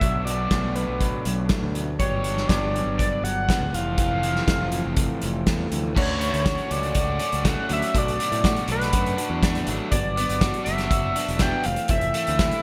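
Bright, 1980s-style digital production gives this short indie rock excerpt a small-room ambience and light reverb, with a wistful, jangly mood. At 121 BPM in a straight 4/4 in D major, a loose acoustic drum kit sits up front, with gated reverb, a pumping room sound, dark cymbals, a medium-tuned snare and a tight kick. A growling fingered electric bass, overdriven and punchy, holds the low end. A compressed, picked overdriven electric guitar with subtle chorus and digital delay plays a riff, and a clean electric guitar riff, bathed in lush chorus, sits in the background. Over the top, an edgy, tearing sync lead with a sawtooth tone, fast attack, vibrato, chorus and delay carries the melody throughout. The harmony moves through Bm7, Gmaj7 and Fmaj7, then shifts to Dmaj7 at 6.0 seconds before cycling back through the same chords.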